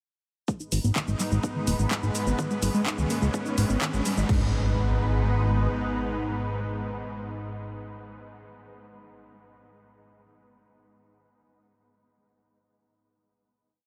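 Up front, a fat, saturated analog bass gallops in sixteenth notes beneath a punchy, overdriven four-on-the-floor kick and a bright-hatted house kit with clap, shaker and crash, as a soft round pluck arpeggio in a 12-step loop drifts against the bar under a filter sweep through a dark, cinematic 126 BPM melodic techno build in G# minor, while a lush detuned pad, a tense string-like drone and, later, a very quiet riser and impact enter during the build and carry on into a final G#m chord from 4.3 seconds in a dreamy mix soaked in reverb.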